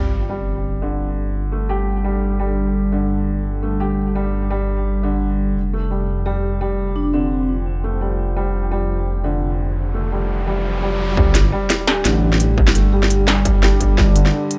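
A half-time drum and bass groove at 171 BPM, swung on the sixteenths, sits under a spacious, tense passage cut from a longer piece. A deep, moody pad built from detuned saw and sine layers holds sustained chords in the background, coloured by chorus, reverb, vintage 12-bit sampler grit and sidechain pumping, while a felt-muted upright piano plays soft, intimate arpeggios through a low-pass filter and digital delay. Up front, a dark detuned saw bass rumbles and beats with tube saturation, and an electronic sub drop and riser mark the opening and build toward the drop. A mellow vibraphone with soft mallets and tape echo offers brief ringing melodic phrases from 6.3 seconds, floating airily in the background. At 11.2 seconds a distorted electronic kick enters, joined a moment later by an industrial kit with a clanging snare and crisp hats under a low-pass filter, both re-recorded in a small room. 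An eerie, inharmonic FM drone, wave-folded and very quiet, creeps in beneath it all at 12.3 seconds, under a light digital ambience.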